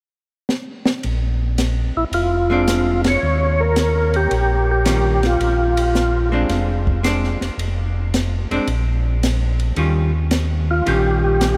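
A dry cocktail drum kit with a punchy kick and high-tuned snare opens this soulful, swinging soul jazz organ trio with a fill at 0.5 seconds; a round, mellow tonewheel organ bass enters at 1.0 seconds on Bb9, and a percussive, lightly overdriven tonewheel organ melody with slow rotary speaker and chorus vibrato joins up front at 2.0 seconds, supported by dark, clean hollow-body archtop guitar accompaniment as the harmony moves through Bb9, Eb9 and Fm in a vast, echoing space.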